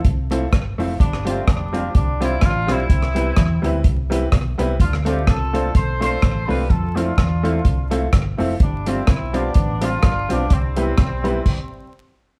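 Cheerful and upbeat, this ska excerpt moves at 126 BPM in C major with a light swing, cycling through jazzy seventh chords as a mellow, punchy horn section with vintage vibrato carries the melody. Beneath it, a dry reggae drum kit with a tight kick sits up front with crash, hi-hat, kick and rim click, while a round, amped hollow-body bass holds the low end, a clean, compressed jazz guitar plays accompaniment, and a woody upright piano adds clear stabs. The band sounds like it is playing live in one room with a moderate studio reverb and a touch of vinyl crackle, and the excerpt closes on a stop from 11.5 seconds to the end.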